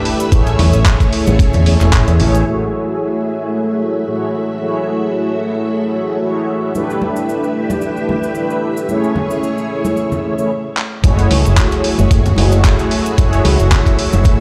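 Groovy and sleek, this nu-disco excerpt sets round, detuned synth brass with dub echo over a lush, vintage string machine whose filter sweep begins at 2.5 seconds, with ringing cabasa and congas that fall away after the opening and return at 6.8 seconds, while a gritty sampler-style kit of handclaps and hi-hat, a punchy envelope-filtered fingered bass and a thumpy, up-front kick drop out after the opening and come back through a drum fill at 10.8 seconds into the drop at 11.0 seconds, all in a large studio reverb.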